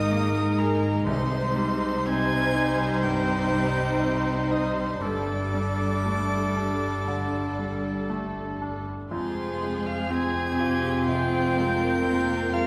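A rubato pulse of about 58-63 BPM in 4/4 carries this sorrowful, longing cinematic orchestral cue in F minor, where a distant solo violin sings the high melody with expressive vibrato and portamento over a lush symphonic violin section that carries the melody lower down. Behind them, a hollow, mellow silver flute, a roomy oboe, a very quiet clarinet and a focused chamber violin section weave second lines. A clear, vintage-toned grand piano and a smooth viola section provide accompaniment, a horn section holds sustained chords, and a close cello section and woody double basses anchor the bass. A very quiet timpani sounds only from 1.1 to 2.5 seconds, and the scoring-stage reverb gives the whole cut a wet, spacious sound.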